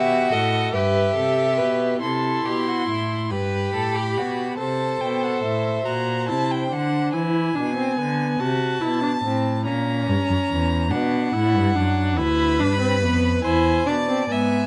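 Elegant and joyful, this baroque-style fugue for string quartet in 6/8 sets an expressive, smooth-topped first violin melody with vibrato and portamento above a rich, even second violin that falls silent from 7.1 to 12.2 seconds, an expressive viola accompaniment, and a warm cello bass, all captured by close, detailed microphones with light reverb.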